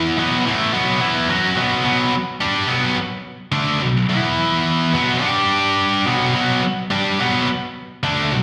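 A bright, double-tracked, high-gain electric guitar plays alone and up front with slapback echo in this aggressive, heavy rock excerpt at 107 BPM in B minor, moving through power-chord shapes on B, E and G as it shifts into a new section at 1.8 s, all heard through a live venue PA with moderate club reverb.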